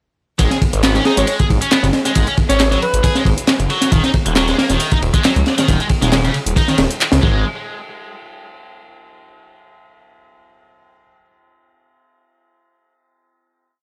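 At 0.4 s this raw, funky breakbeat piece drops in at 136 BPM in G# minor, with a loose 16th-note swing. The up-front acoustic break is gritty and dark, with a punchy kick, a high-tuned snare, a ride cymbal and a rolled-off top, looped with edits. A tape-warm analog drum machine lays closed hi-hat and handclaps over it. A swirling, thick detuned saw bass with a phaser drives a dotted rhythm in the low register, while a double-tracked, scooped high-gain guitar cycles a picked 32-step riff through distortion, tube saturation and analog delay. From 1.1 to 3.2 seconds a clear alto saxophone plays short jazz phrases with scooped notes, colored by an old-record sound and delay. The drop runs until 7.4 seconds, then a final hit closes the piece, all set in a dry, small room with a saturated hardware grit.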